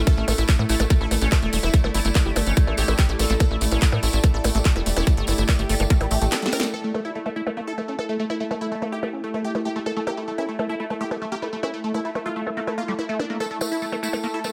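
A tight kick drum sits up front driving this intense psychedelic trance excerpt at 144 BPM, joined by a punchy sequencer bass until 6.3 s, a bright detuned supersaw stab melody with phaser and tape echo, a squelchy resonant acid bass riff that gets a filter sweep from 6.7 s, a techno kit of cracking snare, metallic hats, handclaps and filtered percussion blips, a jingly tambourine, a faint metallic wobble bass, and a breathy pad and overtone-sweeping drone pumping in the background throughout, with a short break and drum fill at 6.3 s.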